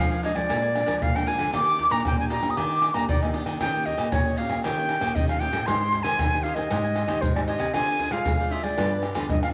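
At a straight 116 BPM in 4/4, this lively, bittersweet samba and choro excerpt puts a pure, reedy concert flute with vibrato and a crisp attack close and up front, over fingerpicked nylon-string guitar accompaniment, a deep classical nylon-string guitar bass with audible finger squeak, a picked cavaquinho in the background, and maracas, pandeiro, tight surdo and tamborim, all in a wet echo-chamber reverb as the harmony moves from Bb7 through Ebmaj7 and Abmaj7 to Dm7b5 and G7.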